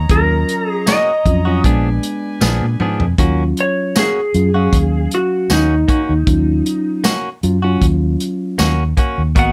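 A mournful, smoky soul blues cut from a longer piece opens on a soft horn-section chord with vibrato, a round foam-muted bass, a reedy electric piano heard through its built-in speakers and a tight, distant soul kit with tambourine, before a bright direct-recorded clean guitar adds stabs at 0.9 seconds, and after a drum fill the slightly broken-up slide guitar, bathed in plate reverb, takes a compressed solo from 3.2 seconds as the horns fall away.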